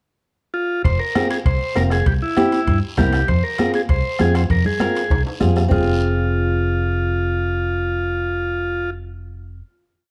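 A buzzy vintage combo organ opens this short, fiery cumbia with a pickup phrase at 0.5 seconds, its motif-based melody sitting up front with a touch of plate reverb. At 0.8 seconds the band arrives on F minor at a brisk 197 BPM in a straight 4/4. A dark, round fingered electric bass plays an amped cumbia figure up front, alongside a soft-beater bombo, a raspy guiro, hard-handed high-tuned congas and metal-shell timbales set in the background. A fingerpicked classical nylon-string guitar adds triad chords through the F minor to C7 progression, giving the passionate harmony a gentle acoustic body. The percussion drops out after a drum fill from 5.1 to 5.7 seconds, leaving organ, bass and guitar to hold a final chord in a moderately roomy, dark and warm mix.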